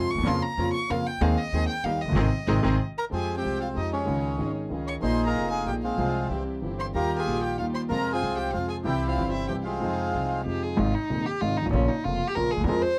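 A dry, close 1970s-style studio sound with light reverb frames this passionate, tense tango excerpt in 3/4 at 189 BPM with a rubato feel, moving from Ab major into F minor at 3.1 s; a warm, expressive bowed violin with vibrato and portamento opens as a solo line over a clear, up-front concert grand piano with deep bass, a woody, thumpy pizzicato upright bass and very quiet stabs from a rich, gut-string chamber string section, before a reedy, dark bandoneon takes the melody from 3.0 s and the violin returns to the fore at 10.8 s.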